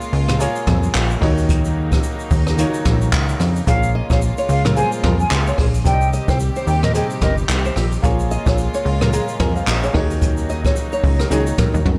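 A brushed jazz drum kit with a boomy kick and gritty 12-bit sampler texture opens this mellow, smooth afrobeats excerpt at 110 BPM in Bb minor, alongside polished grand piano and reedy, gut-toned strings in the background, joined almost at once by a punchy, funky analog bass with a fast attack and filter pluck, while a hollow concert flute with vibrato and delay carries the melody from 3.7 to 7.4 seconds and a dark, fingerpicked nylon-string guitar riff with delay enters at 4.0 seconds, all within a small room's reverb.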